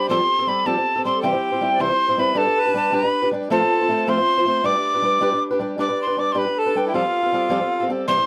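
Bright and rollicking, this short cut from a longer Celtic folk tune in G mixolydian moves in a straight 6/8 at 105 BPM, with a breathy, mellow metal whistle carrying the tongued, chiffy melody up front with vibrato and a slightly unsteady tone, over a boxy fingerpicked swing-style acoustic guitar, while a reedy, dark accordion joins at 1.2 seconds with a smooth second line, all heard closely and in detail in a small room.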